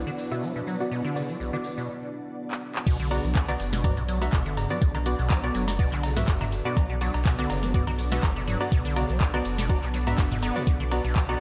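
Acid house at 123 BPM in B minor, driving and trippy, cut from a longer piece, where a lush, phaser-swept unison pad, a squelchy, resonant acid bass riff with overdrive, muted dub chord stabs steeped in tape grit and diffuse delay, a faint ethereal pad and distant grainy maracas open over a filter sweep and a break until a booming analog drum machine with metallic hats fills in at 2.5 seconds, and the drop at 2.9 seconds brings a thumpy kick and a round, tube-saturated sub bass pumping beneath a dreamy, reverb-soaked mix.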